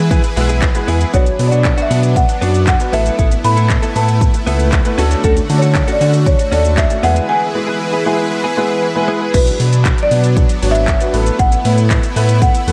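A woody marimba played with medium mallets carries the melody in this upbeat, carefree dance-pop clip, its boxy small-room tone trailed by a diffuse ambient delay. Beneath it, a dark, mellow baby grand piano with long sustain and lush chorus supplies the accompaniment, opening with a brief fill from 0.4 to 1.1 seconds. A detuned supersaw pad holds sustained chords with a slow attack and long release, and it pumps with sidechain compression along with the piano and a round analog bass that sits up front with a deep, fast-attack sound. Electronic pop drums with a punchy kick, metallic hi-hats, shaker, handclaps and crash cymbal keep a straight 4/4 feel, while a clean, direct-recorded electric guitar plays a compressed, picked riff with subtle chorus in the background until 9.3 seconds. The mix is dreamy and soaked in plate reverb as the chords move through E, Bm, Asus2 and Dmaj7.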